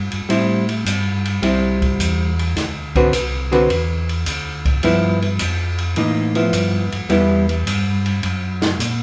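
Soul jazz organ trio at 106 BPM in a swinging, bluesy G mixolydian groove, cut from a longer piece, with a mellow, round tonewheel organ holding the bass line through chorus vibrato and a slow rotary speaker, an open, natural acoustic drum kit with dark cymbals and a boomy kick joining at 0.1 seconds, and an up-front, clean hollow-body jazz guitar playing picked accompaniment from 0.3 to 7.5 seconds over Am7, D13 and G13, all played live in one room and bathed in large studio reverb.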